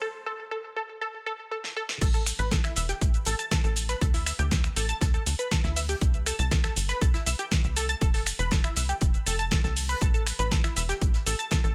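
A straight 4/4 pulse at 120 BPM drives this progressive house excerpt in A minor, with a driving yet emotional mood. It opens on a build-up, where a detuned, sawtooth-and-square sequenced synth plays plucky arpeggios through a filter sweep, its mellow tone thickened by chorus, sidechain pumping and delay. A drum fill from the pop kit at 1.6 seconds leads into the drop at 2.0 seconds. There, a punchy, up-front electronic kick arrives with a tight, nasal sequencer bass whose tube-saturated, pumping plucks decay. The pop kit adds a fat snare, metallic hi-hats, finger snaps, shaker and crash, while a very quiet cloth-damped acoustic kit with a rolled-off top adds a warm, thuddy snare and hi-hat underneath. The harmony moves through A5, D5, C and F before returning to A5, inside a high-passed digital ambience.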